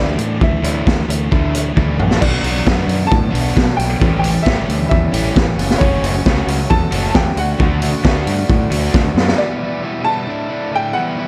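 Restless and bittersweet, this 134 BPM indie rock excerpt pairs a clear, woody upright piano melody with a compressed, overdriven electric guitar riff, a thick fuzz guitar with subtle chorus sitting in the background, a growling, punchy fingered bass, and a raw, saturated garage drum kit placed up front with a boomy kick and high-tuned snare in a small room, while a barky, very quiet tine electric piano adds a second line from 4.9 s, and after 9.4 s only the piano and overdriven guitar carry on to 11.3 s.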